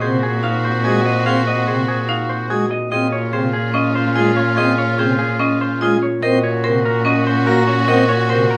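Close, detailed microphones and a light reverb frame this bright, hypnotic stretch of minimalist pattern music at 145 BPM in 4/4, cut from a longer piece. A clean, compressed semi-hollow electric guitar carries the melody while a warm oboe with light vibrato adds a second line, and a woody marimba played with hard mallets spins percussive arpeggios over a brilliant pipe organ plenum. A lush, bowed violin section holds sustained chords and a rich, up-front cello anchors a Bb bass beneath the harmony moving from Ab7/Bb to Dbmaj7/Bb at 2.9 seconds and Ebm7/Bb at 6.2 seconds.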